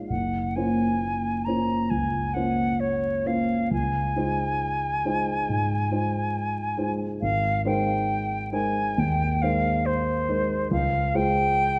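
A warm concert grand piano opens this wistful, mysterious impressionist duo, its deep bass and short sustain drifting through lush chords such as Gbmaj7#11 and Dbmaj9 in a loose, rubato 4/4. A silver concert flute enters at 0.1 s with a pure, metallic melody, tongued and shaded with vibrato, floating up front alongside the piano until the fragment is cut off at 11.8 s. A wet scoring-stage reverb and vinyl crackle give the recording a dark, warm sheen.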